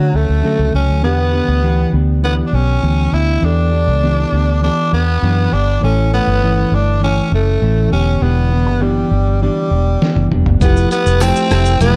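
A dark, hazy digital ambience wraps this short indie and bedroom pop fragment, which moves at 100 BPM in a straight 4/4 and sits in E dorian with a lonely mood. A breathy, raspy tenor saxophone carries the melody up front, its gritty, vibrato-laden tone thickened by lush chorus and slapback echo. Beneath it, a reedy electric piano with a cassette-tape colour sits in the background, while a clean, fingered semi-hollow electric guitar adds accompaniment with subtle chorus and a warbly pitch drift, and a round, foam-muted fingered bass punches through up front. The harmony moves from Dmaj7 to Em7 and A before settling back on Em7. At 10.0 seconds a compressed, pitched-down, sampler-style drum kit arrives with a fill, its thumpy kick and medium-tuned snare sounding muffled and re-recorded in a small room, and a jingly tambourine joins very quietly at 10.6 seconds as the music shifts to Fmaj9. 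A very quiet granular cloud pad blooms at 11.5 seconds, adding a blurred, detuned haze with slow attack and built-in reverb in the final moments.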